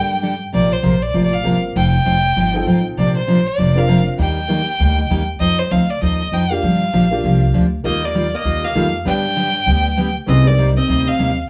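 A moderately roomy studio sound frames this playful, swinging western swing clip, with a focused, up-front bowed fiddle carrying the melody through a plate reverb and light vibrato. A boxy upright piano with short sustain and a full-bodied picked dreadnought acoustic guitar fill out the accompaniment, while a woody, dark pizzicato upright bass anchors the low end. At 7.9 s a clean, hollow-body electric archtop guitar slips in behind them with a second line, through chords that move from Gmadd9 toward Cm7.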